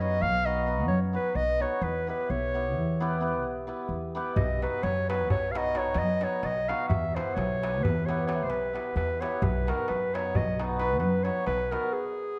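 A punchy clarinet leads this Balkan wedding-band excerpt, playing a virtuosic, bittersweet solo melody up front in a classical style. It runs in a brisk 11/8 at 261 BPM counted in eighths, with a straight feel, over chords that alternate between B and Em. A mellow hammered dulcimer supplies shimmering, ringing accompaniment, while a woody, growly pizzicato upright bass on steel strings sits prominently underneath with a thumpy tone. A crisp, deep metal-shell darbuka joins at 4.4 s and stays in the background with a live-room character. The excerpt closes with a stop from 11.9 s to 12.4 s, all within a dark, warm production and a moderate scoring-stage reverb.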